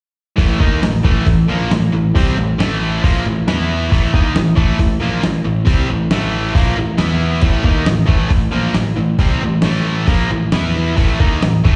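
Menacing and driving, this hard rock excerpt in A minor moves at 136 BPM in a straight 4/4, cut from a longer piece and running from 0.4 to 11.8 seconds. A distorted electric guitar carries the riff between A2 and E4, its bright, overdriven, double-tracked tone sitting up front with a slapback echo on its picked notes. Beneath it, an overdriven picked electric bass holds down the low end from A1 to E2 with a dark, round, direct sound. A sampler-style drum kit with a dusty soul character supplies crash cymbal, hi-hat, a thumpy kick and a medium-tuned snare, compressed and gritty with a tape-warm edge. The harmony circles between A minor and E5, landing on A5 at 11.0 seconds, while the whole band sounds like a live gig heard through a venue's PA, wrapped in light recital-hall reverb and dulled at the top end.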